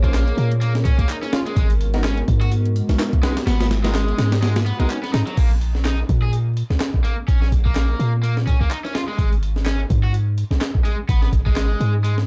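A dry, dark mix with vinyl crackle frames this swaggering, gritty breakbeat cut at 126 BPM, swung 16ths, moving from Bbm7 and Abm9 to Bbm. Up front sit a compressed, pitched-up sampled break with a thumpy kick and high-tuned snare, its kick dropping out at 4.4 seconds, and a deep, boomy, warm 808-style bass with tube saturation, while a bright, overdriven stack guitar riff with dub echo runs alongside a background garage kit of handclaps and bright hats. A moody, detuned analog pad with chorus and sidechain pumping stops at 5.3 seconds, and bold, punchy orchestra-hit-like synth stabs with dub echo end at 5.4 seconds.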